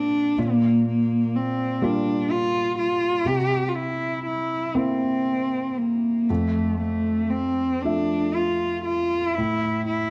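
Haunting and longing, this brief fragment of a Celtic slow air in G dorian drifts in rubato 6/8 at roughly 38-42 BPM, with a single dark bowed cello carrying the melody up front, full of vibrato and portamento, over a soft, felt-muted upright piano whose mellow chords and audible action noise feel close and intimate, the pair set in a moderate recital-hall reverb with a faint mains hum beneath.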